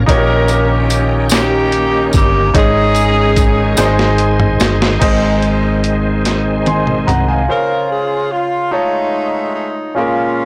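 Reverent and uplifting, this slow gospel excerpt moves at 49 BPM in a straight 6/8, opening on Eb7/Bb and passing through Absus4 and Ab before settling toward Dbmaj7 and F7alt. A brilliant concert grand piano with deep bass accompanies up front throughout, while a full, shouting tonewheel organ holds sustained chords through a slow rotary speaker and chorus vibrato, stepping forward for a solo from 5.0 to 7.5 seconds. A round, punchy hollow-body electric bass sits up front underneath, and a loose saxophone section carries the melody in a jazz style with vibrato. A gritty, compressed sampler-style drum kit with a thumpy kick and high-tuned snare adds fills around 3.8 and 6.2 seconds, joined by a jingly, close tambourine. The organ, bass and drums drop out near 7.5 seconds, leaving piano and saxophones to finish the passage, and the whole recording is blown-out and overdriven beneath light digital reverb.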